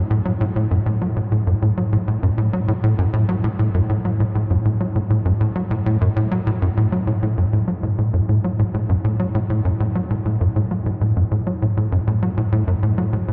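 Drenched in a vast cathedral reverb, this mysterious, hypnotic ambient fragment at 99 BPM in F# minor features a lone tight sequencer bass up front, dark and punchy with a plucky sawtooth-and-square filter sound, subtle chorus, vintage 12-bit sampler grit and tape echo, ranging from F#2 to F#3 across two statements of the same section.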